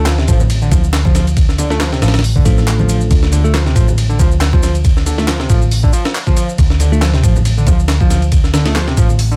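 Funky and swaggering, this short breakbeat passage rides a swung sixteenth-note groove over a single D minor chord throughout. A pitched-up, sampler-style drum kit sits up front with a thumpy kick, high-tuned snare, hi-hat and ride, its compressed, tape-warm sound carrying real grit, while layered electronic handclaps and shaker add an overdriven edge. A dark, round hollow-body bass, picked and amped, is the loudest part, anchoring the low end in a tight range. An overdriven synth lead plays a screaming, guitar-like sawtooth and square-wave riff with a filter sweep, vibrato and delay, and a clean, bell-like tine electric piano adds delayed stabs in the background until 8.8 seconds. Very quiet acoustic congas struck with hard hands ring in a small room, the mix stays dry overall, and a break arrives at 9.2 seconds.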